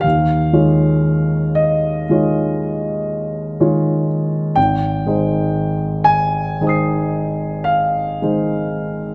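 A moderate concert hall reverb surrounds an up-front concert grand piano whose open tone carries deep bass and long sustain, spanning Ab1 to C7. This hazy, dreamy impressionist solo piano fragment from a longer classical piece drifts in 9/8 at 35-41 BPM, counted in dotted quarters, with a free rubato feel. The harmony rests on Dbadd9 over Eb before settling onto Abmaj7 at 4.6 seconds, and the fragment closes at 9.1 seconds.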